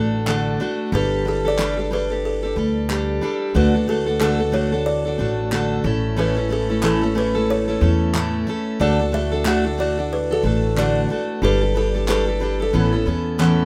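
A lightly reverberant mix opens this carefree, heartfelt acoustic pop excerpt, where a buzzing, ringing kalimba carries the melody over a full-bodied, picked jumbo steel-string guitar and a woody, dark pizzicato upright bass, both up front, with hollow group handclaps entering at 0.3 seconds in a swung groove that moves from D through Gsus2 and A before closing on Aadd9.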